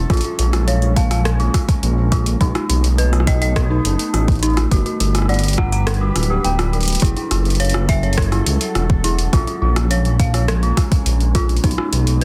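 A glassy, ethereal FM pad with chorus and reverb pumps against a deep, rumbling detuned saw bass as this intricate, cerebral IDM excerpt opens, joined by eerie, inharmonic synth-bell arpeggios run through phaser and dub echo, metallic hi-hats and rim clicks from a tape-warm analog drum machine, and an overdriven electronic kick that drops out at 5.9 seconds before a drum fill at 6.7 seconds, all under a dense, heavily limited modern master.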